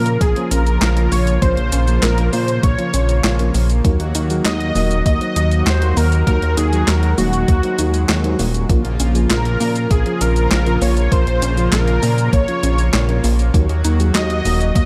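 Steeped in digital ambience, this cinematic, driving synthwave excerpt in Bb minor at 99 BPM sets a thick, wave-folded unison lead with chorus, tape echo and vibrato over a very quiet, dreamy FM electric piano with soft pad layer carrying a second line, a brassy analog pad with tremolo and sidechain pumping in the background, lo-fi arpeggios from a faint warbly dusty pluck, dark, round stabs from a mellow FM electric piano, an up-front, glossy chorused synth bass with tube saturation and sidechain pumping, and a clean 12-bit digital drum machine of handclaps, hi-hat, shaker and medium-tuned snare, joined at 0.2 seconds by an overdriven, thumpy electronic kick drum, both drum parts re-recorded in a large room, as the chords move between Bbm and Ebm.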